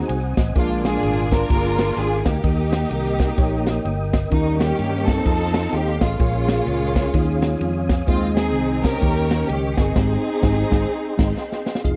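Lush, bowed strings carry the melody from the start of this soulful, uplifting uptempo gospel piece in Ab major at 128 BPM with a swung feel, set over a clean tine electric piano in the background that adds fills, soft, flute-like tonewheel organ chords through a slow rotary speaker with chorus vibrato, a dark, round fingered bass, and an airy, punchy big-band drum kit up front, with a band accent at 10.0 s and a drum fill before a very quiet, mellow French horn section enters at 11.8 s, captured in a dry, close 1970s-style studio sound.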